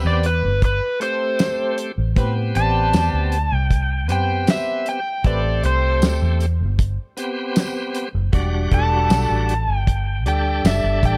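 A close, dry-sounding recording with little reverb carries this smoky, soulful straight-eighth soul blues excerpt at 78 BPM in 4/4, where an overdriven slide guitar solos up front over a bright, shouting tonewheel organ with a lightly overdriven slow rotary speaker, a dark, round, punchy foam-muted fingered bass, a damped 70s drum kit with fat snare, tight kick, hi-hat and tambourine entering at 0.2 s, and a warm, tight jazz-style horn section holding sustained chords in the background until 9.5 s, as the harmony moves from Am9 to Em9 at 8.3 s.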